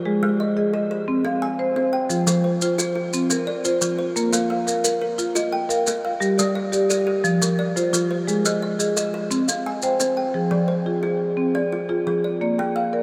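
Southern African traditional music in a mbira-style interlocking cycle, this trance-like, hypnotic passage moves in a steady, straight 12/8 and is cut from a longer piece. A marimba played with medium mallets sits up front, its rosewood bars giving a woody, warm tone as it spins out arpeggios across the whole passage. Behind it, a quieter kalimba adds its own arpeggios, its thumbnail-plucked tines sounding bright, short and airy over a hollow box. Maracas enter at 2.1 seconds with a grainy, mellow shake and drop out at 10.2 seconds. The parts float in a vast, echoing space, bathed in a huge ambient reverb that lets each note hang long after it is struck. The harmony circles through chords such as Ab, Cm, Gm and Bb before shifting to Fm for the closing repeat of the cycle.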